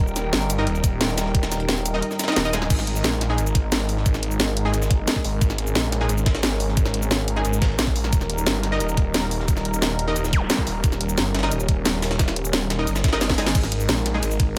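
Aggressive and futuristic, this excerpt of dark technical drum and bass runs at 177 BPM in a straight 4/4, moving between D# and G#sus2 chords. A snarling, growling distorted saw bass sits up front throughout, detuned and compressed with a moving notch, while a deep, moody analog pad holds sustained chords underneath with chorus and sidechain pumping. For the opening 2.7 seconds a warbly, nostalgic tape-like pad hovers in the background before dropping away. The drums stack a knocking electronic kick and an up-front kit with a cracking snare, hi-hat, ride, crash and cabasa, plus a very quiet, gritty breakbeat sampler-style kit with a pitched-up snare; the kick drops out briefly before the 2.7-second mark, and a drum fill arrives near 13.2 seconds. Bold, punchy orchestra-hit-like stabs cut through with a bright, plucked attack, reverb and digital delay, and a brief electronic zap flickers in the background near 10.3 seconds, all in a dry, close-sounding mix.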